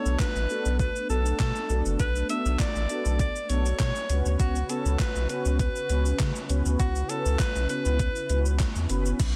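Bittersweet yet confident, this short dance-pop excerpt at 100 BPM sets a bright, lightly vibratoed alto saxophone melody with tape echo over mellow, detuned synth brass and a smooth, chorused analog pad in the background, both pumping with the sidechain, while a thick, saturated sub bass and an up-front, overdriven 80s drum machine with a thumpy kick, gated-reverb snare, handclaps, hi-hat, shaker and crash drive the dense, dry mix through a move from Bm7 to F#sus4 at 4.1 seconds.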